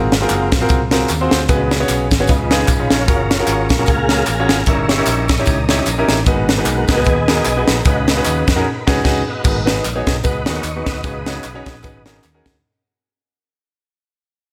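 A smooth tonewheel organ leads through a slow rotary speaker and chorus vibrato in this jubilant, hopeful uptempo gospel cut at 151 BPM in swung 4/4, backed by a clear concert grand piano with slapback echo and audible action noise, a growly fingered electric bass, a crisp fusion drum kit with a high-tuned snare and punchy kick, and tambourine and handclaps in the background, set in a lush hall with a big arena sound until a band accent at 8.7 seconds gives way to a fade-out from 9.4 seconds.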